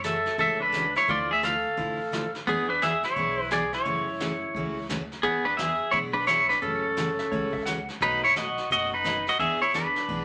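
Down-home and swinging, this brief western swing excerpt at 173 BPM puts a clean, compressed pedal steel guitar up front on the melody, played with fingerpicks, slide and volume swells, over a bright, full-bodied picked jumbo acoustic guitar, a woody gut-string upright bass in the background and a punchy, rolled-off vintage brush kit, while a dark lap steel guitar adds a brief second line from 7.2 to 7.9 seconds, all in a club reverb through chords moving from F#m7 to E7.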